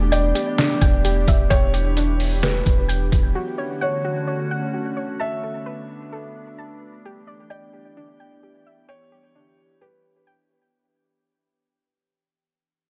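A gritty, pitched-down sampler-style drum kit sits up front at the start of this hazy, melancholic cloud-rap fragment, its thumpy kick, medium-tuned snare and hi-hat sounding compressed and tape-warm before the kit drops out at 3.2 seconds. A deep, round 808-style bass holds a dark E1 underneath until 3.3 seconds. At 130 BPM in a half-time 4/4 feel in E dorian, a glassy FM pad sustains ethereal chords through ensemble chorus and built-in reverb, pumping from sidechain compression. A soft pluck layered with a sub octave plays arpeggios through chorus, low-pass filtering and digital delay. A felt-muted upright piano carries an intimate, mellow melody with its own filtering and delay, moving over Em7, Dmaj7, Bm7 and back to Em7. The dry-sounding mix fades out across the whole clip, which is cut from a longer piece.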